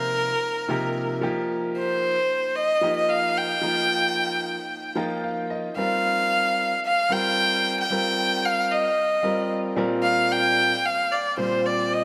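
A single bowed violin and a clear grand piano begin together, both up front, setting a nocturnal, intense mood in this jazz piece in C minor at 112 BPM in a straight 4/4. The violin carries the melody between Bb4 and G5 with a rich, nasal, focused tone, its vibrato and slightly boxy character standing out above the piano. The grand piano accompanies across a span from Bb2 to G5, its open sound ringing with long sustain, and it adds a fill between 4.7 and 5.8 seconds. The harmony moves from Cm7 to F9sus4 and later settles on Gm7/Bb at 9.8 seconds. A wet plate reverb with a 3.5-second decay and a bright 1980s-style digital production give this twelve-second fragment of a longer piece its bright sheen.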